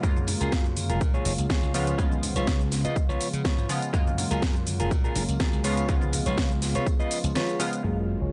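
Dry and dark-topped, this feel-good, funky slice of filtered disco house moves at 123 BPM with a light swing over an F#maj9 to C#7 progression, led by a punchy, overdriven electronic kick up front over a layered house kit of hi-hat, shaker and cracking snare, while a bright, amped slap bass with tube saturation, a chorused sawtooth polysynth comp with phaser and filter sweep, and a clean, picked electric guitar riff pump under sidechain and low-pass filtering, very quiet acoustic tambourine and congas add hard-hand texture, and an electronic impact lands at 7.8 seconds.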